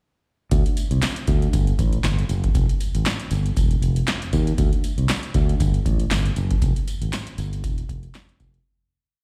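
Early-eighties boogie funk at 118 BPM with a 16th-note swing, this short, danceable late-night breakdown is heard as a live gig through the venue's PA. A punchy, growly fingered electric bass plays a fat syncopated line with chromatic approach notes. It sits up front beside an analog drum machine with a deep kick, metallic hats and a snare layered with handclaps in a tape-warm, mid-tempo boogie beat, while a jingly tambourine with slapback echo marks the backbeat in the background before the piece fades out from 6.6 seconds.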